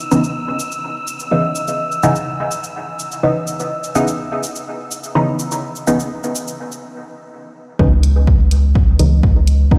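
Cavernous and hypnotic, this dub techno passage in straight 4/4 is cut from a longer piece and sounds as if it is played on a big sound system in a bare room, with a large studio reverb around it. A muted, detuned sawtooth chord stab on a C#m9 chord leads the mix up front, its filter sweeping as chorus, phaser, sidechain pumping and dub echo give it an evolving, deep character. Beneath it, a layered electronic shaker and hi-hat sit in a small room reverb, while a breathy, wind-like tuned noise texture hangs high and dark with its own built-in reverb and pumping until it stops at 6.8 seconds. After a short break, a punchy, overdriven electronic kick drum and a round, soft sub bass with a triangle and square wave tone arrive together at 7.8 seconds, both placed up front. The bass pumps with the sidechain and adds a solid low weight beneath the stabs for the closing section.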